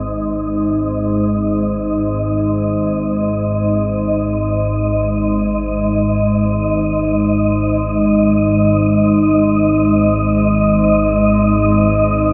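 In free time, this dark ambient drone drifts along with a desolate, unsettling mood across a 12.3-second portion cut from a longer piece. An organ-like drone sits up front in the low register, calm and sustained with slow attacks, long releases and an ensemble chorus that thickens its unison tone. Above it, a deep, moody pad holds sustained chords in the middle range, its detuned sawtooth and sine layers reinforced by a sub octave and shaded by chorus into a dark, brooding colour. A breathy, wind-like tuned noise texture hovers higher on a single pitch, airy and mellow as it fades in slowly. All three parts play throughout, resting on a G#5 chord, and the whole piece is steeped in a huge, wet reverb with an 8.2-second decay that blurs the layers into one vast space.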